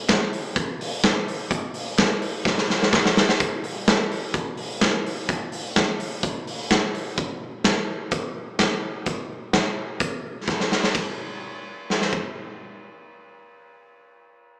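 Youthful and bright, this indie pop excerpt moves at 127 BPM in a straight 4/4, carried by a big acoustic rock drum kit that sits up front with a punchy kick, medium-tuned snare, bright cymbals on hi-hat and ride, and a pumping big-room sound. A very quiet, crisp group handclap joins the kit from the start until 3.0 seconds, and drum fills at 2.5 and 10.5 seconds lead into new sections. The drums stop at 12.2 seconds, and the whole band sounds as if playing live in one room through a small speaker, with a moderate large studio reverb.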